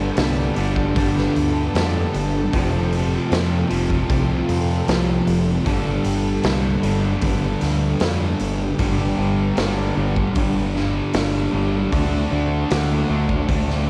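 A string machine's lush, slow-attack chords under a chorus shimmer open this hazy, dreamy 77 BPM shoegaze and dream pop excerpt in G mixolydian, alongside a bright double-tracked overdriven guitar riff, a hollow-bodied semi-hollow guitar with reverse reverb and a dark fuzz guitar set back in the mix, over a growling, round fingered bass up front and a gritty, saturated garage drum kit in a pumping stone room with a cassette-tape sheen, with the strings dropping out at 8.8 s as the music turns to G major over G and D7 chords.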